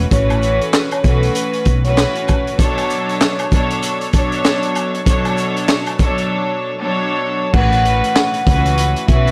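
A swung, crunchy boom-bap breakbeat of punchy kick, high-tuned snare, hi-hat, handclaps and dark crash cymbal drives this confident hip-hop excerpt alongside an up-front, reedy bowed string section with a gut-string tone, while a growly, round fretless bass and a mellow, ringing soft-mallet vibraphone melody with delay both play at the start and return at 7.5 seconds, and a vintage egg shaker and woodblock sit in the background until 6.2 seconds.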